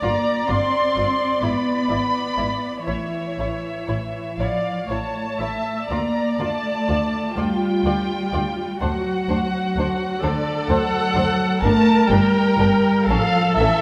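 A moderate concert-hall reverb of about 2.0 seconds surrounds this short excerpt from a slow, elegiac classical movement for string orchestra, played with rubato in 6/8 at roughly 38-43 BPM in dotted quarters and tuned to A4 = 445 Hz. Every section plays con sordino throughout: muted, dark violins carry the melody with light vibrato and a smooth top, a lush second violin section sits in the background, rich violas with soft attacks supply the accompaniment, and close cellos join distant double basses on the bass line. The solemn harmony moves from Gm through A, Dm and D before returning to Gm and A, and the strings keep a veiled cast.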